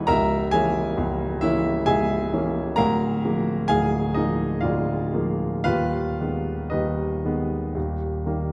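A polished, up-front grand piano plays alone through this brief passage of a yearning, melancholic romantic nocturne in a rubato 3/4 at around 55-68 BPM, reaching from C#1 to D#6 over chords moving from A#m7b5/C# through A#7/D and G#m/D# to D#, tuned to A4 = 439 Hz and set in a dark, warm production with a 1.6-second recital hall reverb.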